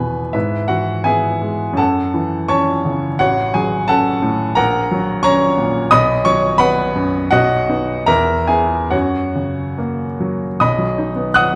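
A clear, intimate baby grand piano sits up front with audible action noise in this lyrical, hopeful romantic character piece for solo piano, moving with rubato in 2/4 at 68-90 BPM across a range of A1 to F#6, settling into B major from 4.6 s and resolving on a B chord at 10.6 s, all set in a moderate recital hall reverb with a dark production, cut from a longer piece.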